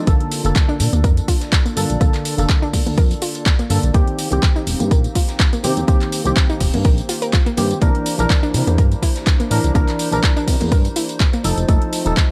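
Deep house at 124 BPM in Bb major with a gentle 16th-note swing, soulful and warm, cut from a longer piece where a loud, overdriven electronic kick and a gritty deep house kit of handclaps, metallic hats and tambourine drive the groove, while a very quiet acoustic kit with a fat snare, hi-hat and shaker sits far beneath them. A smooth, dark synth bass with tube saturation glides between notes, a hollow organ stab with analog chorus and delay punctuates the beat, and a soft, round pluck spins arpeggios through cassette-tape coloring and delay. A warbling, nostalgic pad sits in the background holding chords that move from Bbmaj7 through Eb6 and C9 to F7, with sidechain pumping on the melodic parts and bass and small room ambience around the mix.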